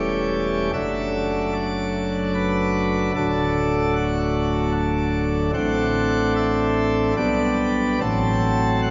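A classical chorale-style piece for solo pipe organ in D major, this short fragment of a longer work moves at 74 BPM in 3/4 with a rubato feel, its mood serene and majestic. The organ plays alone throughout its 8.9 seconds, sounding a full plenum with mixtures that spans from D1 up to A5. The baroque voicing is brilliant, with audible chiff at the start of notes, and the instrument sits up front in the mix. The harmony passes from A7/E to D/F#, settles on D, then moves through D7/A and G/B before arriving on F#dim/A at 8.0 seconds. A long, wet church reverb of 3.5 seconds surrounds the sound, and the top end rolls off above 7.6 kHz, giving the recording a spacious character.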